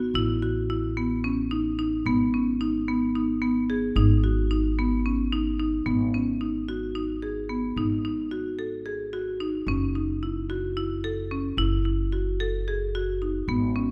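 In an uneven seven-beat metre with a straight feel, this restless, urgent piece of contemporary chamber music, cut from a longer work, sets up-front hard-mallet marimba arpeggios, percussive and dark on rosewood bars, over a woody pizzicato upright bass with steel strings, both heard throughout in a moderate recital-hall reverb as the harmony moves from G#m to G#7(no3) at 5.9 seconds and on to F#7(no3).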